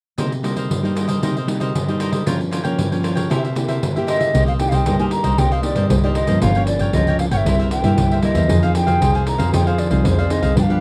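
Yearning and bittersweet, this short samba and choro excerpt opens with crisp picked cavaquinho, fingerpicked classical nylon-string guitar and a jingly, distant pandeiro, before an airy, hollow wooden flute with vibrato enters at 4.1 seconds and a rich, bowed gut-string double bass sits up front from 4.3 seconds, all captured in a dry, close 1970s-style studio sound with light reverb.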